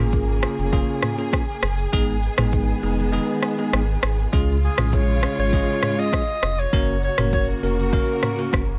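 A distant, roomy alto saxophone with light vibrato carries the melody from 4.6 seconds, treated with delay and plate reverb, over a breezy, joyful afrobeats groove at 100 BPM in Db mixolydian, where an up-front electronic afro-pop drum kit with a deep kick, metallic hats, shaker, rim clicks, toms and vintage 12-bit sampler grit drops its kick between 3.1 and 4.3 seconds, a full sine-and-triangle sub bass with octave anchors the low end, a bell-like, bright tine electric piano plays clean accompaniment through plate reverb, and a dark, lush symphonic string section holds bowed chords moving from Bbm7 through Abm and Db to Gb in this short cut from a longer piece.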